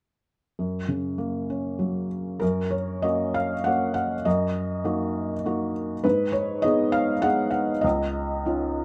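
A felt-muted upright piano, soft, mellow and intimate with audible action noise and sitting up front in light reverb, plays a relaxed, hopeful classical solo in F# major at 99 BPM in a rubato 3/4, moving through F#, D#m/F#, G#m and C#add9 in this brief cut from a longer piece.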